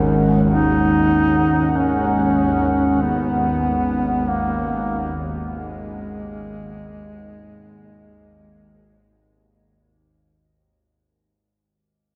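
Drenched in a huge, lingering reverb, this dark, ominous ambient excerpt in free time fades out across its length over a single F#sus2/G# chord, where a deep, detuned analog pad with chorus holds sustained chords above a tense, string-like bowed drone. A faint, inharmonic FM bell traces eerie arpeggios, and a mellow, up-front duduk sings a folk-style melody with vibrato, scooped notes and tape echo from 0.5 to 9.2 seconds.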